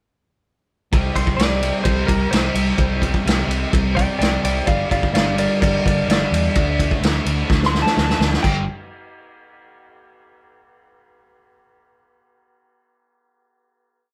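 At 0.9 s a raw, rowdy garage rock band bursts in at 128 BPM in a straight 4/4, with a gritty, up-front vintage drum kit stomping out a garage groove under dark cymbals, a round, amped fingered bass driving eighth notes, and a bright, double-tracked fuzz guitar pounding out driving eighth-note power chords. From 1.2 s a clean, twangy lap steel slides through a lick-based theme that returns over the chords moving from C5 to G5 and D5. A drum fill at 7.5 s throws the band onto a final G5 chord at 8.4 s, all heard in a moderate live-room reverb.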